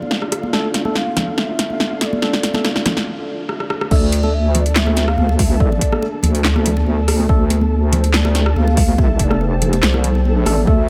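A breathy, hollow shakuhachi leads this meditative deep dubstep excerpt in D minor at 142 BPM in half-time, its line run through a low-pass filter sweep and dub echo over a dark ambient pad, a flickering grainy texture, background congas and a tine electric piano playing stabs, while an overdriven house drum kit with a punchy snare and metallic hats builds with fills up to a break at 3.1 seconds. At 3.9 seconds the drop lands heavy, as an overdriven electronic kick and a deep, saturated wobble bass with chorus come up front beneath the filtered, echoing shakuhachi and piano. The whole sits in a light digital ambience, with the pad kept very quiet and the congas bright and damped far behind the drums.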